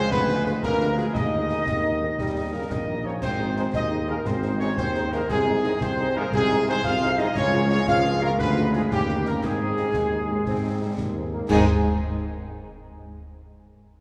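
A church reverb with a long 3.5-second tail gives this rousing, spirited wind-band march the spacious feel of a concert hall. It moves at 116 BPM in a straight 6/8 in Ab major, and this excerpt is cut from a longer piece. A dark, smooth-topped trumpet section carries the melody, while a mellow tuba sits up front on the bass. The woodwind section, a pure, tongued flute group with vibrato, and a distant, roomy euphonium each add a second line, and the flutes stay in the background. Trombones hold sustained chords in the background, a very quiet French horn section with a soft attack supplies accompaniment from 0.3 seconds, and concert snare, bass drum and dark clash cymbals drive the march in a live room. The harmony opens on Ddim7 and moves through Ab/Eb and Eb to Ab, then resolves through Ddim7 and Eb7 back to Ab near the close.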